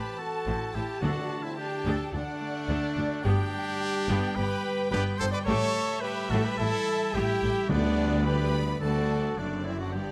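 Present French horns hold sustained chords beneath a lush, vibrato-laden violin melody in this soaring, heroic cinematic adventure cue at 108 BPM in G major, as a second, expressive violin section with portamento, a distant solo oboe and a hollow, airy flute ensemble add second lines, fingerpicked concert harp arpeggios ring, a solo trumpet plays stabs, a very quiet viola section accompanies from 0.5 s alongside a clear double bass section and a rich cello section on the bass, and hard-mallet timpani strike at 1.0 and 7.7 s, the whole set in a moderate scoring-stage reverb captured with close, detailed microphones.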